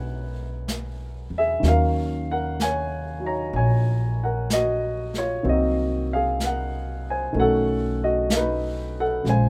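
A slow swing in 4/4 at 63 BPM sets a wistful, melancholic jazz mood in this brief excerpt, cut from a longer piece. A warm baby grand piano carries the accompaniment from the start, sounding natural and up front as it moves through rich chords, E13 to Ebm9, then Cm7b5 and B9. An upright bass plays pizzicato beneath it, woody and growly with a thumpy, close presence from its steel strings. At 0.7 s a jazz brush drum kit joins, its medium-tuned snare and hi-hat stroked with brushes in a natural studio-room sound. Light reverb gives the trio a gentle sense of space, keeping the whole passage intimate and reflective.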